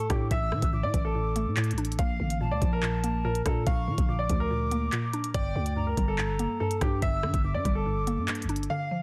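A clear, natural grand piano melody opens this short drill cut, joined at once by a mellow, hollow jazz flute playing a higher second line with airy vibrato and a crisp chiff, both parts trailing digital delay echoes. Beneath them a woody, round synth pluck with an FM, vintage character and a warbling chorus supplies mallet-like accompaniment in the low and middle register. At 0.1 s a growling, buzzy 808-style bass and an up-front electronic drum kit arrive, the kit built from a knocking kick, crisp hi-hats, handclaps and rim clicks in a half-time feel at 143 BPM. The harmony moves from Asus4 to Bb and then G minor beneath the cold, ominous mood. Light reverb and a dense, heavily limited modern master keep the sound tight and forceful through this brief excerpt, with the bass and drums stopping at 8.7 s as the melodic parts ring on to 9.0 s.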